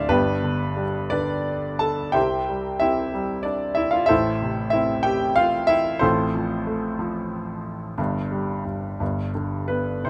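The recording sounds intimate and natural, with the grand piano placed up front in a light reverb and the noise of its action audible beneath the notes. This is a peaceful, calm piece of lyrical classical piano, heard as a short passage cut from a longer work. The solo piano carries everything alone for the full 10.1 seconds, its clear tone spanning from a deep D1 in the bass to A5 in the treble. The music moves in a lilting 6/8 with a free, rubato feel, unhurried and gently breathing. Its harmony drifts from G to C, then through A minor and F over A, settling onto a C over G at 8.0 seconds before closing on a G with an added ninth.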